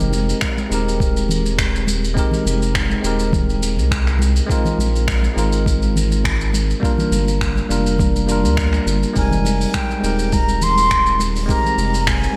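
A bell-like tine electric piano opens this relaxed, smooth sunset chillout excerpt, its bright, clean tone sitting up front with delay and slapback echo, over a round, deep analog bass that is dark and sustained. A vintage brush drum kit with a rolled-off top, played with brushes in a small, pumping room, adds finger snaps, hi-hat and shaker, while very quiet congas with soft hands sound close and dry. From 0.4 s a compressed, sampler-style electronic kick drum brings a gritty, thumpy, tape-warm pulse in a straight 4/4 feel. The harmony moves from Fm11 through Bb9sus4 and Gm7 before returning to Fm11 at 9.2 s, where an airy wooden flute with a soft attack and straight tone enters with the melody, carrying delay and slapback echo. A lush hall reverb gives the mix a big arena sound.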